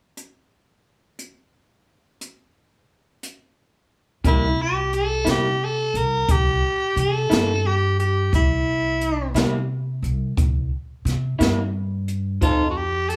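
Slow blues in 12/8 at 59 BPM, counted in dotted quarters, with a soulful, gritty mood in C mixolydian, cut from a longer piece. Brushed jazz drums open alone, their high-tuned snare, hi-hat and boomy kick sounding natural in a small room. At 4.2 seconds the band arrives over a C7 chord: a woody pizzicato upright bass with steel strings sits up front, and an electric guitar through a small old amp adds slightly broken-up, lo-fi, compressed picked accompaniment coloured by harmonic tremolo. A growling tenor saxophone carries the melody as a raspy, bright jazz solo with vibrato, placed present and up front with plate reverb. The harmony moves to F7 at 12.4 seconds, and a moderate club reverb gives the whole band a small-room setting.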